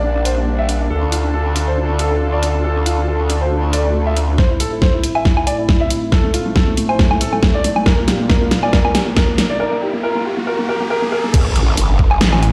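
Heard through a big sound system in a bare room, this heavy wobble dubstep excerpt carries a moderate digital room reverb that gives it a large, hard-walled space. At 138 BPM in 4/4 with a half-time feel and a light swing on the 16ths, it sits in A phrygian and sounds menacing and weighty. A dark, mellow baby grand piano carries the melody through a dub echo while a lush, airy unison pad holds sustained chords, pumping under sidechain, and a growling, wobbling bass with formant-filtered saturation pushes up front. The dubstep kit brings a huge snare and bright hats, and an electronic kick with a knocking, tape-toned punch enters at 4.4 s to drive a build-up of drum fills and an electronic riser, before a break strips things back. At 11.3 s the drop lands with an impact, the growl bass returns, and a snarling, detuned sawtooth bass with heavy distortion bursts in for the final moments. Across the excerpt the chords move from Gm/Bb through Dm, Am and Bb to Gsus2.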